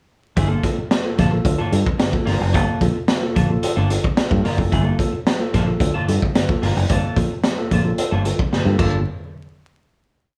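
A straight 4/4 funk groove at 111 BPM in G minor sits on a single Gm9 chord, driving and hypnotic, with a raw garage drum kit up front playing a syncopated pattern with ghost notes, its punchy kick, high-tuned snare and dark cymbals saturated and gritty in a small, pumping room. A growly fingered electric bass lays down a syncopated riff anchored on the downbeat with muted ghost notes and chromatic approach notes, while a clean semi-hollow electric guitar with subtle chorus picks sixteenth-note rhythm with muted scratches, and a mellow tine electric piano adds percussive two-handed stabs. Light reverb, vinyl crackle and studio ambience colour the short piece, and a drum fill at 8.5 seconds leads into a final hit at 9.1 seconds.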